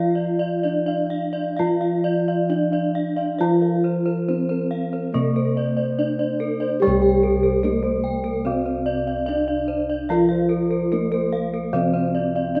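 In a straight, unhurried four-beat pulse, this serene Javanese gamelan excerpt pairs a mellow metallophone melody, struck with padded disc mallets, against a boxy, horn-mallet metallophone accompaniment below. Above them ring arpeggios from round, mid-forward bossed gongs and from a second horn-mallet metallophone whose paired tuning gives shimmering beats. Beneath everything, airy, bright bossed gongs carry the bass, the bronze ensemble glowing in a moderate stage reverb as the music moves into a new section at 6.8 seconds.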